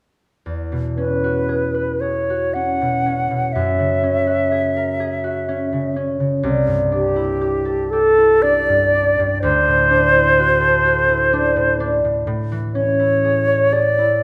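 A pure-toned silver flute with vibrato and a soft attack sings the melody from 1.0 seconds over a fingerpicked concert harp whose ringing accompaniment begins at 0.5 seconds, both close and present in this luminous, pastoral classical impressionist duo, cut from a longer piece, that drifts in a rubato 3/4 through E69, F#9, C69, D9 and Amaj7 chords inside a moderate recital hall reverb.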